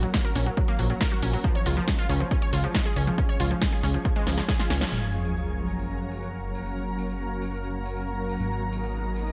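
A light reverb and digital ambience surround this euphoric, uplifting trance passage in F# major at 138 BPM, cut from a longer piece. A lush, bright unison pluck built from detuned sawtooth voices plays arpeggios with a fast attack and a filter sweep, pumping against the sidechain and trailing a tape echo until 4.9 seconds. Beneath it, a fat analog bass blends sawtooth, square and triangle tones with ring modulation and a filter sweep, sustaining a thick low end that also pumps with the sidechain. A dry, punchy electronic kick sits up front until 4.6 seconds, while an analog drum machine supplies a punchy snare, hi-hat, tambourine and crash cymbal, all softened by low-pass filtering. A drum fill and a band accent lead into a sub drop impact at 4.9 seconds, opening a new section where the harmony settles on F# before moving to G#madd9.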